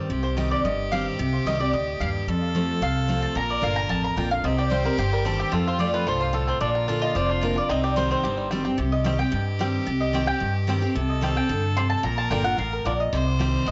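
Dry, gritty cassette-tape sound with light reverb and a dulled top frames this lonesome, rustic bluegrass cut in C dorian at a brisk 221 BPM. A bright, full-bodied picked steel-string acoustic guitar sits up front with audible finger squeak, and a woody pizzicato upright bass anchors the low end. A mellow, double-strung mandolin carries the melody through analog delay, while a clear, earthy bowed fiddle with light vibrato adds a second line through its own delay. A twangy, fingerpicked banjo joins the melody at 4.4 seconds.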